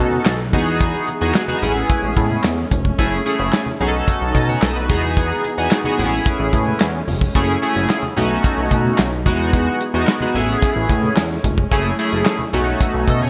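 Bright, digital early-eighties production with light reverb frames this slick, late-night boogie funk at 110 BPM, where an up-front chorused polysynth with glossy pulse-width and sawtooth tones carries the Emaj7, Amaj7, F#m7 and B7 changes over a ring-modulated, filter-plucked chorused synth bass, a damped, dry 70s drum kit with gated reverb on its tight kick, snare, hi-hat and handclaps, very quiet low-tuned congas, and a dark, woody studio string section holding lush bowed chords in the background.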